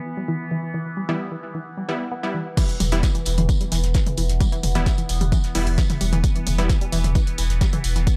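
An overdriven, punchy electronic kick lands up front at 2.6 seconds, driving this hypnotic, relentless slice of peak-time techno in E minor at 131 BPM alongside a gritty analog drum machine's crash, hats and toms, a dark brushed kit with snare and tambourine, and a deep, round sine sub bass that pumps against the beat. Before the drop, a wave-folded drone with moving overtones sustains over an Em chord, while a tight detuned sawtooth riff swirling with chorus, phaser and analog delay and airy supersaw stabs move through filter sweeps. The dry, small-room hardware sound keeps the whole cut close and raw.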